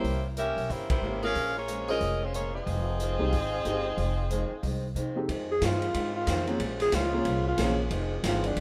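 A swinging 4/4 groove from a distant, roomy drum kit with dark cymbals, a woody, growly upright bass, a boxy picked acoustic guitar in the background and an open baby grand piano drives this dramatic big band swing excerpt, where a tight, vibrato-rich saxophone section carries the melody and the band hits an accent at 0.9 seconds; at 5.3 seconds a very quiet, clear trombone section begins holding sustained chords, and a warm, subtoned alto saxophone takes a solo from 5.5 seconds.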